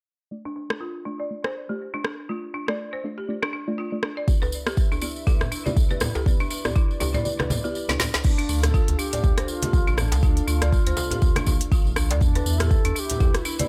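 Heard in a small room, this spiritual, driving afro house excerpt at 121 BPM in D dorian opens with a dark, warbling chord stab and a dry, woody marimba under a filter sweep, joined at 0.7 seconds by an overdriven afro-pop drum kit with metallic hats, then at 4.3 seconds by an up-front deep kick, bright congas, a jingly tambourine, a cracking djembe and a smooth analog pad, before the kick drops out briefly and a drum fill leads into a new section at 8.2 seconds where a pure, gritty bass bansuri carries the melody over a round sine sub bass.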